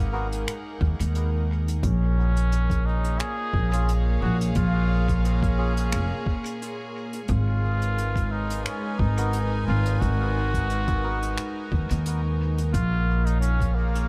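Meditative and spacious, this ambient dub excerpt sets a muted trombone melody, brilliant and nasal with dub echo, over floating, softly bowed string chords and a woody pizzicato upright bass that sits up front. A reedy melodica adds echoing stabs in the background until 11.2 seconds, while a soft brush kit with finger snaps and hi-hat, also treated with dub echo, joins at 0.3 seconds. A muffled, thumpy, pitched-down electronic kick enters at 0.8 seconds, and the echo-heavy mix sits in a small room reverb.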